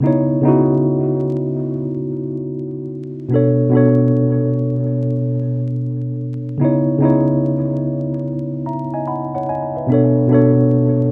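Hip hop at a slow 73 BPM with a swung 16th-note feel: a short, hazy and reflective passage cut from a longer piece, carried by a single tine electric piano playing alone from 0.0 to 11.1 seconds and moving between C#m9 and Bm9 chords. The piano sits up front with a worn, slightly out-of-tune tone, colored by cassette tape, a low-pass filter and analog delay, in a small, reverberant room. The rough home-demo mix is tuned to A4 = 444 Hz and carries a bed of vinyl crackle, with a brief change in the closing second.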